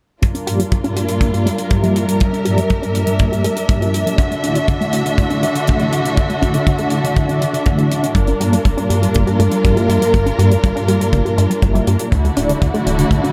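A bittersweet, danceable italo disco excerpt in G dorian at 121 BPM opens with dark, expressive bowed strings up front holding sustained chords over a tight, natural kick drum, a small-room hi-hat and a punchy, detuned unison pluck whose background arpeggios carry 12-bit sampler grit, tape echo and a filter sweep. From 0.5 s, round, brassy synth stabs with chorus, vibrato and tape echo join over the Gm7 and Dadd9 changes. At 8.1 s a glossy, nasal chorused synth bass enters, all within light small-room reverb.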